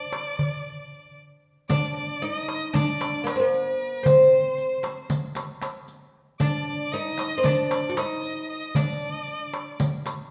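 A moderate recital-hall reverb gives this short cut from a longer Turkish makam ensemble piece a stately, warm glow. In a straight 9/8 at 230 eighth-note beats per minute, a fretless oud carries the melody up front, its plectrum-plucked double strings sounding bright, woody and deep. A single bowed violin plays a second line from farther back, its tone clear and focused with a touch of vibrato. A small metal-shelled darbuka, played up front with soft hands, gives a crisp, high, compressed and somewhat saturated pulse. After a break from 0.5 to 1.7 seconds, the music moves into a new section and a riq enters at 1.7 seconds, adding bright jingles that sound as if they were in a small room.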